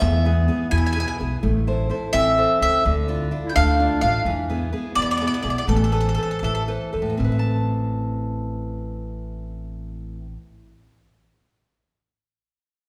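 Italian folk serenade in A minor and a straight 6/8 at 75-86 BPM (counted in dotted quarters), wistful and romantic, cut from a longer piece, all set in a wet recital-hall reverb. An up-front picked mandolin with round, doubled strings sings the melody over a soft-attack, close-miked clarinet second line, while fingerpicked classical nylon-string guitar and a thumpy, woody pizzicato upright bass carry the E, Am, Dmadd9 and Amadd9 harmony. The tempo slows from 4.3 s, and after mandolin and clarinet stop at 6.6 s, guitar and bass carry a brief new section.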